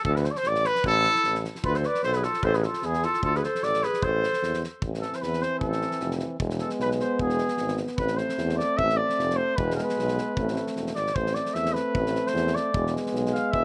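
Dry and outdoors with little reverb, this bittersweet, restless Balkan brass band fragment in A harmonic minor swings at 151 BPM in 2/4: a mellow trumpet with light vibrato carries the melody up front over a clear tuba bass and an acoustic drum kit with a fat snare and tight kick, while a slapback-echoed clarinet adds a second line from 0.8 to 4.6 seconds before a bright trombone and a smooth-topped euphonium, also with slapback echo, take up background accompaniment at 4.8 seconds as the trumpet moves into a solo.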